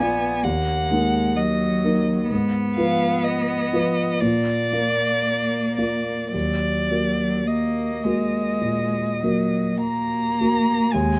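Solemn and yearning, this fragment of a slow romantic piano trio movement unfolds in a flexible rubato, with a warm, up-front violin carrying the melody in expressive vibrato and portamento, a rich bowed cello singing a second line in the same manner, and a dark, mellow vintage grand piano accompanying intimately, its action noise audible through close, detailed microphones and light reverb.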